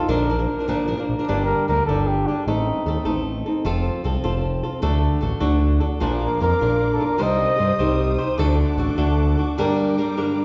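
Mexican folk in a mariachi vein, this passionate, dramatic excerpt moves at 101 BPM in a straight 6/8, set in G minor. A fingerpicked flamenco guitar, fresh-stringed and up front, carries the accompaniment from the very start, joined almost at once by a smooth synth bass whose sawtooth, square and triangle tones, ring modulation and fast-attack sustain give it a smooth, warm presence up front in the mix. A dark solo trumpet sings the melody in a classical style with light vibrato and a smooth top, first from 0.0 to 3.2 seconds and again from 6.0 seconds. At that second entry a muted, con sordino violin section slips in behind, its veiled, lush bowed chords sitting far back. The harmony travels from Bb through Gm, Adim, F and D before returning to Bb, Cm and D and closing on Gm, all placed in a wet recital hall reverb heard from further back in the room.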